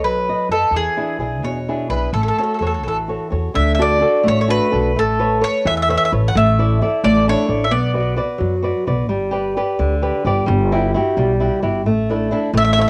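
Italian folk serenade in a straight 6/8 at 86 BPM, sunny and romantic, cut from a longer piece and starting in A major before settling into D major from 3.6 s. A bright, double-strung mandolin carries the melody up front, its picked tone given a tape-worn sheen and a plate reverb glow; it sings until 8.2 s, then returns briefly at 12.6 s. Beneath it, a dark flamenco guitar fingerpicks the accompaniment throughout, with audible finger squeaks adding intimacy. A pizzicato upright bass with steel strings supplies a woody, warm low end, its sound thickened by transformer saturation. The harmony drifts through colorful chords such as Aadd9, Dsus2/A, Bm and G before resting on Asus4, all captured in a small booth with a homespun cassette character.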